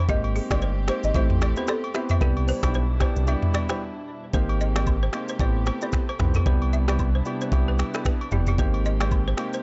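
A dark, warm production in a small room frames this romantic, breezy afrobeats excerpt at 113 BPM with a swung sixteenth feel, led up front by an electronic afro-pop kit with a knocking kick, smooth hats, snaps, rim clicks, shaker and toms, alongside a deep, round, slightly nasal analog bass. A buzzing, airy marimba carries the melody through tape echo until 3.5 seconds, while a woody, dry balafon riff, also echoed, runs throughout over a vintage-toned grand piano and Abmaj7, Am7 and Cmaj7 chords. Floating, sul tasto strings sustain softly in the background with agogo bells, woodblock, maracas and group handclaps, and a brief break at 3.8 seconds leads into the second section.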